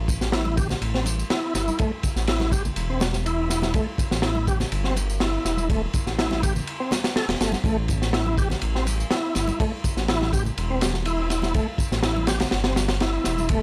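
Gritty and funky, this short breakbeat fragment rides on a crunchy, saturated drum kit with a punchy kick, high-tuned snare and dark cymbals, sitting up front beside a rumbling, detuned saw bass that starts at 0.0 s. An overdriven tonewheel organ enters at 0.3 s with a thick, percussive riff, colored by chorus vibrato, a fast rotary speaker, analog delay and a low-pass filter sweep. A faint, tape-warm tambourine and hard-hand congas sit further back, all in a dry, raw hardware sound with light reverb.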